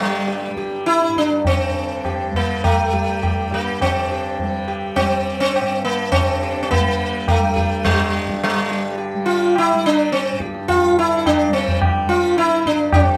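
In a straight 4/4 pulse that starts at 104 BPM and speeds up throughout, this solemn, meditative Hindustani classical excerpt in raga Bhimpalasi on G sets an up-front, round, plectrum-plucked sitar melody, buzzing and shimmering with sympathetic strings, over a softly plucked tanpura drone, while high-tuned, ringing tabla enters at 0.3 seconds and sits distant in a large-room space, all within a moderate small-room ambience.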